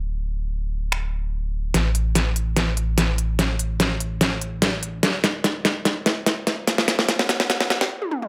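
A layered electronic dubstep drum kit, up front with a deep snare, crisp hats and a tape-warm edge, drives this bright, euphoric future bass excerpt at 146 BPM in a half-time 4/4 feel, its finger snaps, hi-hat, snare and toms arriving at 0.9 s over a thick, sustained, triangle-toned sub bass with tube saturation and a fast attack, before a build-up from 1.7 s carries a long drum fill and filter sweep to a stop at 7.9 s, the mix sitting in a moderate digital room reverb with a high-pass filter and tuned to A4 = 439 Hz.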